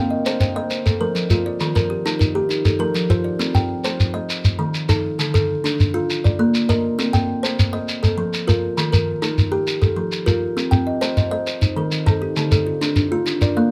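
Hypnotic and trance-like, this southern African traditional piece, cut from a longer performance, turns an interlocking mbira-style cycle in 12/8 at 134 BPM through C dorian chords. An up-front, woody kalimba with a hollow-box thumb pluck rings out arpeggios throughout, while a second, quieter kalimba, dry and full with a thumbnail attack on a solid board, plays alongside it until 3.7 seconds and returns at 10.7 seconds. A grainy, mellow shekere with a live-room air sits prominently beside them, and close, detailed microphones with little reverb keep the sound intimate.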